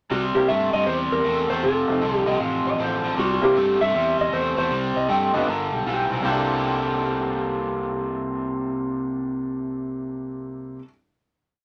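A dark, slightly broken-up slide guitar opens this soulful, laid-back electric blues shuffle at 156 BPM in C mixolydian, stating hook phrases until 4.9 s over a bright, overdriven semi-hollow guitar playing a boogie figure up front, a round fingered bass boogie line, and an intimate concert grand piano whose syncopated comping in close voicings carries audible action noise and long sustain. From 2.3 s a second guitar through a small old amp adds compressed blues licks shimmering with tremolo. At 6.2 s the piece settles onto a final C13 chord under light reverb.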